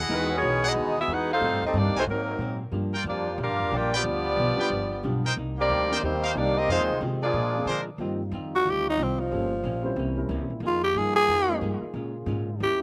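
Big band swing in Eb major at 182 BPM, this energetic excerpt has a clear saxophone section carrying the melody over brilliant trumpet stabs, a nasal muted trombone line with slapback echo, a woody upright bass, clean archtop guitar and an intimate baby grand piano, before the front-line horns give way at 8.0 seconds to sustained trombone chords and, from 8.6 seconds, a raspy, growling tenor saxophone solo up front.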